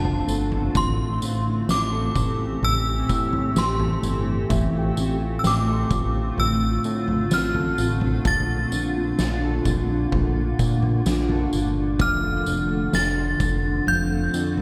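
Dreamy and blissful, this dream pop excerpt drifts at 64 BPM in F major, with an up-front, inharmonic FM synth chime carrying the melody through ensemble chorus, phaser and analog delay, over a cloudy, evolving granular cloud pad, clean fingered arpeggios from a mellow electric guitar, a glossy, retro chorused synth bass, a punchy, gritty oversized low-tuned drum kit with a fat snare and tambourine, and a delicate, bell-like celesta in the background, all set in a plate-reverb haze as the chords move from F6 through Am7 and Bbmaj7.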